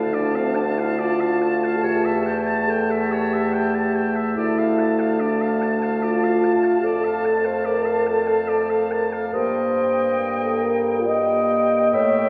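A wet church reverb with a long 3.4-second decay places this wind quintet further back in a resonant room, and the oboe, horn and bassoon in particular sound distant and roomy. The piece is a slow, solemn and melancholic romantic movement in D minor, moving at 71 BPM in 3/4 with a rubato feel. An airy silver concert flute carries the melody high in its range, its metallic tone softened by vibrato and a gentle attack. A clear oboe with light vibrato shapes the second line just beneath it, while a smooth-topped clarinet holds a low, narrow accompaniment alongside the mellow French horn, which sits most forward in the balance. A mellow bassoon with light vibrato anchors the bass as the harmony moves from D minor through Dm/F and settles on Eb/G near 9.3 seconds. The excerpt is cut from a longer piece and runs 12.3 seconds, with all five players sounding throughout.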